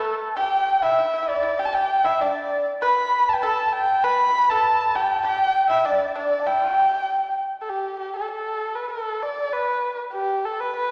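A dark, woody erhu carries the melody up front from the first moment, its bowed line full of vibrato and portamento, while an airy bamboo xiao with a soft attack plays a second line in the background and a dry, percussive fingerpicked pipa adds another second line. This pastoral, graceful Chinese chamber piece moves at 98 BPM in a straight 2/4 in the G gong mode, tuned to A4 = 436 Hz, and sits in the lingering reverb of a scoring stage. The pipa and xiao drop out near 7.3 and 7.4 seconds, leaving the erhu alone for the closing passage until this fragment of a longer piece is cut at 10.9 seconds.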